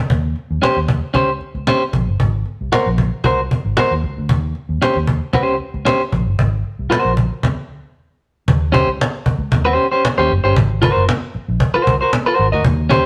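A dark, round, foam-muted fingered bass and a woody cajon played with hard hands open this strutting funk excerpt at 115 BPM in Eb mixolydian, joined moments later by clean, compressed electric guitar picking out the chords up front, all sitting in a stone room with a rough cassette rehearsal-room sound, alternating between Eb6 and Ab9 and breaking for a stop from 7.4 to 8.5 seconds before a new section.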